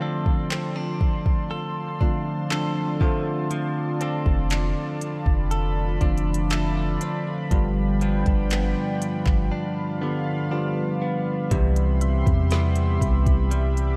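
Soaked in a dreamy cathedral reverb, this tender, smooth contemporary R&B passage, cut from a longer piece, moves at a slow 60 BPM in straight 4/4 in C major, tuned to A4 = 444 Hz. A bell-like, bright tine electric piano with lush chorus sits up front, carrying the accompaniment through F6, Dm7/F and G7 before resolving to Cmaj7, while a shimmering, retro pulse-width pad holds mellow, slow-blooming sustained chords above it. A clean, compressed electric guitar, recorded direct, picks arpeggios through subtle chorus and tape echo. The electronic drum kit, with its soft kick, woody snare, handclaps and hi-hat, carries an overdriven edge, and a deep, boomy, warm 808-style bass joins at 4.3 seconds. A break arrives at 9.5 seconds, and at 12.0 seconds a very quiet, round, dark pluck adds a faint texture on a single high note.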